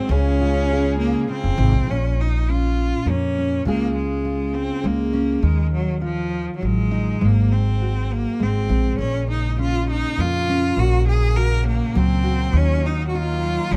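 Dry, this excerpt of a heartfelt, hopeful acoustic folk-pop ballad in Db major moves at 101 BPM in 3/4: a clear, focused bowed cello with vibrato carries the melody up front over a dark, full-bodied fingerpicked steel-string guitar and a woody pizzicato upright bass, while a soft, distant chamber string section floats in the background with sustained chords until 1.9 seconds and again from 9.0 seconds.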